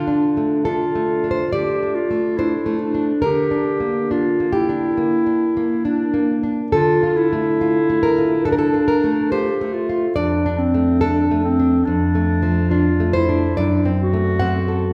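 Melancholic and solemn, this romantic duo in D minor drifts at a rubato 70 BPM in 4/4, with a clear, close-miked clarinet singing a classical-style solo melody up front between C4 and G4. Beside it, a bright nylon-string guitar plays fingerpicked accompaniment from F2 to F#5, its finger squeaks audible, as the harmony moves from Dm through Gm/D and Dm/F to a D7/F# at 13.6 seconds. A wet recital-hall reverb gives the room a sense of distance, and the 14.9-second passage is cut from a longer piece.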